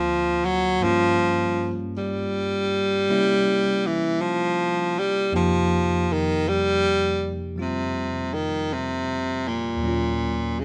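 Smoky and wistful, this slow swung jazz excerpt at 53 BPM sets a clear, up-front baritone saxophone singing a subtone melody over a bright, bell-like tine electric piano that supplies clean, direct chords through a progression from D7alt to Ebm7, all in a lightly reverberant room with a faint mains hum underneath.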